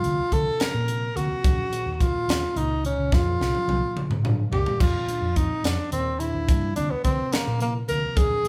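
A moderate large-studio reverb places this band in one room, playing live, for an 8.5-second cut from a longer electric jazz fusion piece with a slick, nocturnal mood. At 71 BPM in a straight 6/8, counted in dotted quarters, the music sits in F dorian and moves from a rootless Gm7 through Eb9sus4 and Fm7 before returning to Gm7. Up front, a breathy tenor saxophone carries the solo melody between Bb3 and Bb4 in a jazz style, with subtone, vibrato and scooped notes. A crisp, polished acoustic drum kit, also up front, pairs dark cymbals with a high-tuned snare and a punchy kick, and it plays a fill from 3.1 seconds. Underneath, a dark, round hollow-body short-scale bass is fingered and amped. In the background, a clean tine electric piano comes through a combo amp with phaser, comping across a broad range and adding its own fill at 4.0 seconds.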